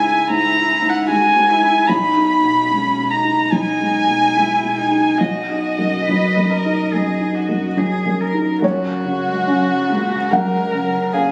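A dark, woody solo violin with vibrato and tape echo sings the melody up front in this hopeful, tender neoclassical excerpt, played rubato at 68-76 BPM in 4/4 over a close, softly bowed cello line and a felt-muted upright piano whose mellow, boxy tone carries audible action noise, all caught on a phone in a room with club reverb as the harmony moves from C#m to F#add9 by 8.6 seconds.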